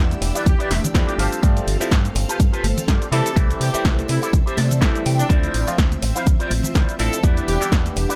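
Nostalgic and sensual, this excerpt from a longer piece is filtered disco house at 124 BPM in D dorian, swung on the sixteenths and moving from Em7 through G9sus4, C6 and Dm9 back to Em7. A punchy, layered electronic kick sits up front beside a tape-warm analog drum machine with hi-hat, shaker and snare, faint congas and tambourine, and a dark, round, saturated fingered bass, while a twangy clav and a scooped envelope-filtered guitar riff pump against the beat, the clav through a phaser. A lush sawtooth string machine with ensemble chorus hangs in the background, a distant, tight jazz horn section with vibrato and tape echo carries the melody from 0.5 seconds, and a clean electric guitar fills in at 0.5 and 4.3 seconds.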